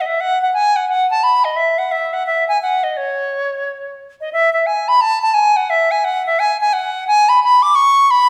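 Swung eighth notes drive this rollicking, bright Celtic folk excerpt at 174 BPM in 4/4, carried entirely by a solo wooden flute with a reedy, pure tone, crisp attack, lifted highs and vibrato, ranging from C#5 to D6. The flute sits up front in a wet recital-hall reverb with a 1.6-second tail, and the tune moves into a new section at 4.3 seconds before the fragment ends at 8.3 seconds.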